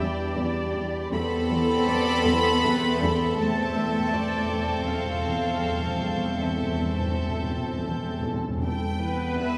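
A soft-edged violin section carries the melody high above this eerie, uneasy suspense film cue, its bowed sul tasto tone pure and floating, while a second, clearer violin section traces a lower line beneath it. Set in 5/4 at 80 BPM with a straight feel, the passage, cut from a longer piece, rests on Em7 before moving to Am/E at 1.1 seconds and returning to Em7 at 8.6 seconds. Violas with light vibrato sit in the background as accompaniment. Two shadowy cello sections supply a riff and a bass line, joined by double basses on a low E and a very quiet, rumbling, nasal drone. An airy, warbling vintage pad with ensemble chorus holds sustained chords behind the strings, and a faint violin texture hovers at the very top of the range. Timpani struck with hard mallets enter at 1.1 seconds for a fill, and a recital hall's lush reverb envelops the whole ensemble.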